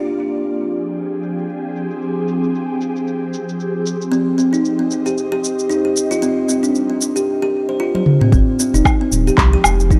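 A swung 114 BPM groove of filtered handclaps, shaker, toms and woodblock from a tape-warm organic electronic drum kit drives this hypnotic, meditative downtempo fragment, cut from a longer piece, as an ethereal, airy pad thick with chorus, phaser, sampler grit and sidechain pumping sustains chords over Fm, Cm and Gm, a woody, hollow-toned kalimba with tape echo spins arpeggios from 4.1 s, and after a drum fill a round, wave-folded analog bass and an overdriven deep kick arrive at 8.3 s on Fm7, the whole captured with a dry, gritty cassette character and light reverb.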